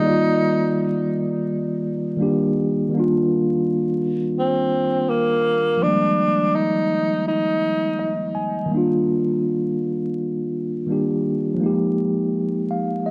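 Worn, warbling cassette tape with vinyl crackle, drifting pitch and a wet studio ambience gives this cosy, nostalgic hip hop excerpt its faded sound, with a lazy swung feel. A breathy tenor saxophone, passed through an analog delay, sings an intimate jazz-style solo up front from the start, whispered and smooth-topped with vibrato and scooped notes, before stopping at 8.3 seconds. A mellow, clean tine electric piano carries on to 13.1 seconds, moving between Ebmaj9 and Fm11 chords.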